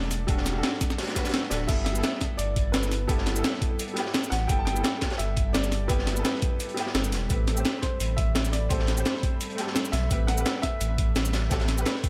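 A deep, round sine sub bass with tube saturation sits up front in this lush, uplifting liquid drum and bass excerpt at 171 BPM in G major, joined by a gritty, thumpy electronic kick from 0.3 seconds and a compressed sampler-style breakbeat kit whose high-tuned snare, crash, hi-hat and cabasa are also up front. Behind them, a dark, saturated acoustic breakbeat kit of hi-hat and snare sits in the background with a rolled-off top, while a boxy grand piano carries the melody through tape echo over a soft, felt-muted upright piano accompaniment fed through digital delay. A very quiet, ethereal pad, detuned and thickened with ensemble chorus, holds sustained chords as the harmony moves from Em11 to G69 at 1.7 seconds and Am9 at 7.3 seconds, within a small room ambience.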